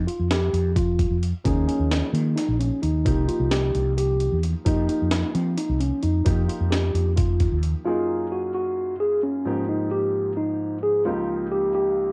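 A mellow tine electric piano opens with clean arpeggios alongside a dark, round fretless bass and a gritty, pitched-up jungle sampler-style kit with a thumpy kick, all sitting up front in an intricate, driving progressive instrumental in 7/8, before a concert grand piano with a deep low end joins the accompaniment at 1.4 seconds and the bass and drums drop away at 7.7 seconds, leaving both pianos to carry this short cut from a longer piece through a moderate room reverb and a cassette home-recording sound.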